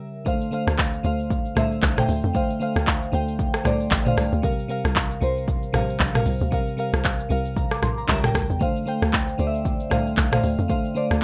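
Deep and late-night, this amapiano excerpt rides a swung 115 BPM groove in D minor, opening with a crystalline FM electric piano that sparkles through chorus and plate reverb before the drums arrive at 0.3 seconds and a tight log drum bass joins at 0.7 seconds. The up-front, tape-warm electronic kit pairs a deep kick and crisp hats with handclaps, rim clicks, shaker and toms, while the punchy, percussive log drum decays with a mellow, noisy edge. Chords move from Dm7 to C7sus4, passing through C#dim7 back to Dm7, all captured in a rough home demo mix with moderate studio reverb.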